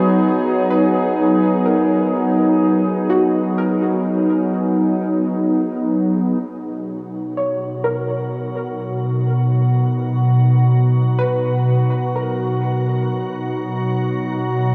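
A straight, unhurried three-beat lilt carries this serene, luminous ambient passage, which is cut from a longer piece and rests on a single Bmaj7 chord. A warbly, tape-like pad sits up front with sustained chords, its detuned, nostalgic lo-fi tone softened by chorus and its own reverb, and it fades in from 6.4 seconds onward. Beneath and around it, a soft, round pluck traces dark, gentle arpeggios in a narrow middle register, coloured by lush chorus and tape echo. At 7.6 seconds a calm, organ-like drone joins, also up front, its detuned unison voices evolving under an ensemble chorus. The whole mix floats in a huge, wet reverb that suggests a vast, echoing space while keeping a hint of small-room ambience.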